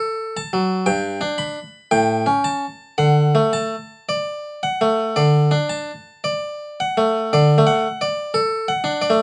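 In a slow, rubato 4/4 at 54-60 BPM, this grave and solemn baroque-style suite movement for solo harpsichord in D major, tuned to A4 = 445 Hz, moves through D, G, A7 and back to D on a bright, plucked, single-strung Flemish-style instrument ranging from G2 to B5, which sits up front and mid-forward in light reverb with a softened top, shifting to a new section at 7.3 seconds before this short fragment of a longer piece breaks off at 9.2 seconds.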